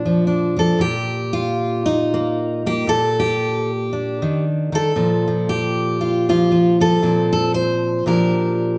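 Hopeful and gentle, this short folk excerpt features a solo fingerpicked steel-string jumbo acoustic guitar, bright and full-bodied with audible finger squeak, sitting up front in a wet large studio reverb at 116 BPM with a light swing, moving over a recurring Bb bass through chords like Ebmaj7#11/Bb and Fadd9/Bb before settling on Bb6 at 8.1 seconds.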